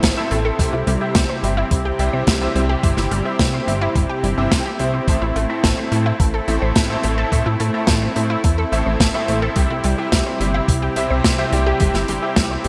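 A straight 4/4 groove drives this moody, nocturnal synthwave clip, with a thumpy, tape-tinged electronic kick under an airy, polished studio kit whose up-front hi-hat and medium-tuned snare carry gated reverb. A glossy, mellow chorused synth bass sits forward, while in the background a smooth, detuned supersaw holds sustained Am and C chords with 12-bit sampler grit and sidechain pumping, and punchy, wave-folded pluck arpeggios run through flanger and delay. Cutting, clangy electric grand piano stabs with ensemble chorus and delay round out the arrangement, and the mix sits in a lush hall reverb with a bright 1980s-style digital sheen.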